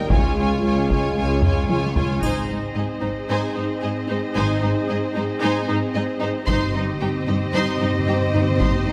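In a straight 4/4 at 113 BPM, heavy-stick taiko drums drive this dark, epic orchestral film-score passage, which is tuned to A4 = 436 Hz and cut from a longer piece. Over a Db chord, a lush, vibrato-laden violin section carries the melody while a second violin section plays a focused line beneath it. Clear violas fill in the accompaniment, distant French horns hold shadowy sustained chords in the background, and close-miked cellos and expressive double basses anchor the bass. The harmony moves to Ab at 2.2 seconds, where a smooth, even string section adds sustained chords and a faint, bright triangle sparkles briefly. The taiko drop away at 3.3 seconds, then return at 6.5 seconds as the harmony settles on Cm/G and articulate, hard-mallet timpani play a fill on G2 through to the end. A moderate scoring-stage reverb gives the ensemble a spacious, cinematic depth.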